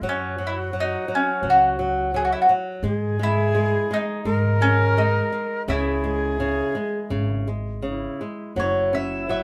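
Rubato and unhurried at 84 BPM in 4/4, this passionate, mournful fado-style ballad in C# dorian, cut from a longer piece, sets a round, double-strung mandolin melody up front over a bright fingerpicked flamenco guitar and a woody, thumpy pizzicato upright bass, while an airy bamboo shakuhachi adds a tongued second line with chiff, all in moderate studio reverb with lossy artefacts.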